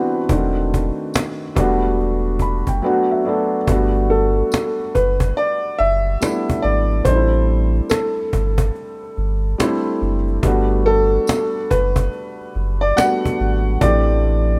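Two upright pianos open together in this melancholic, reflective, swung lo-fi hip hop passage cut from a longer piece, a woody lead melody over a dark, thick-felt accompaniment with audible action noise and cassette tape colouring, quickly joined by soft-handed cajon with faint snares and a round, sine-like sub bass up front, while a jingly tambourine sits in the background from 1.1 seconds, and a felt piano fill at 2.0 seconds gives way to a silent gap at 2.8 seconds before the mellow groove moves into its longer second section.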